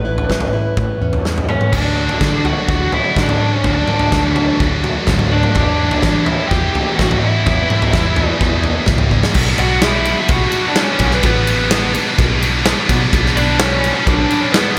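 A big arena sound bathed in lush hall reverb carries this brooding, cathartic quiet-loud alternative rock excerpt in B minor at 126 BPM, where a dark, lo-fi overdriven lead guitar through a small cranked amp sings the melody over a round, foam-muted electric bass and an up-front acoustic drum kit with a punchy kick, while a background plugged-in steel-string acoustic picks echoing arpeggios until 5.6 seconds, a bright, scooped, double-tracked high-gain guitar riff crashes in at 1.7 seconds with distortion and slapback echo, and a drum fill at 9.1 seconds launches the final stretch on Bm.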